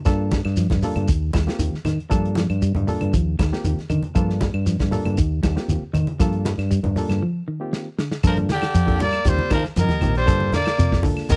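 A dry, close 1970s-style studio sound frames this defiant, hypnotic afrobeat groove in G minor at 117 BPM, cut from a longer piece. A gritty breakbeat kit with a tight kick and a round, up-front fingered bass drive a Gm7 to Eb6 vamp alongside a reedy, lightly overdriven electric piano, clean semi-hollow guitar arpeggios, grainy shekere, woody claves in the background and bright, compressed congas. After a break and drum fill ending at 8.2 seconds, a distant trumpet with scooped notes and light vibrato takes the melody, while an edgy tenor saxophone carries a second line beneath it.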